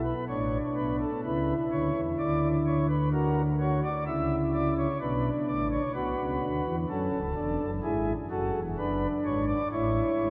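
The rhythm moves in a straight 4/4 at 64 BPM, giving this baroque-style three-part fugue a stately yet lively gait in B minor, tuned to A4 = 444 Hz. A solo pipe organ on soft flute stops carries every voice from 0.0 to 10.3 seconds, ranging from a deep C#1 up to E5. The tone is warm with a romantic voicing, and a tremulant adds a shimmer to the pipes, which sit up front in the sound. A cathedral reverb with a 4.6-second decay bathes the organ in a long, wet halo. The harmony passes from Bm through Bmadd11, F#7 and F#m before settling on G#m7b5/F#, and this excerpt is cut from a longer piece.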